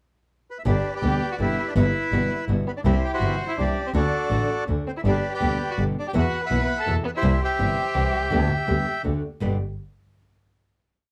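Waltz-time tango in 3/4 at 165 BPM, played rubato in G major, the bowed double bass sets the rhythm up front with its accent on one: a clear, intense line with light vibrato and a smooth top. The reedy, dark bandoneon opens the brief pickup at 0.5 seconds and leads the melody, spinning a motif-based tune in sentence-like phrases. From 0.7 seconds a lone bowed violin adds a boxy, expressive second line in octave doubling, rich with vibrato and portamento. At the same moment the full-bodied nylon-string guitar enters, fingerpicking short tango chords in a deep classical style, with finger squeak audible. The harmony moves through G, Emadd9/G, C and D before settling on a final G chord at 9.4 seconds. A moderate studio reverb and a warm production frame this passionate, nostalgic piece.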